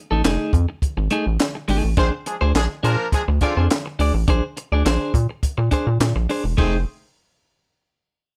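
Funk at 104 BPM with a gritty, playful mood, this short excerpt moves from F7#9 to Bb9 as a picked, scooped clean electric guitar and a hollow, nasal, rubbery square bass sit up front over a dark, compact cocktail drum kit of punchy kick, high-tuned snare, hi-hat, handclaps and crash cymbal, before a tight, distant horn section with vibrato and octave doubling enters at 2.0 s as a second line, all under light reverb.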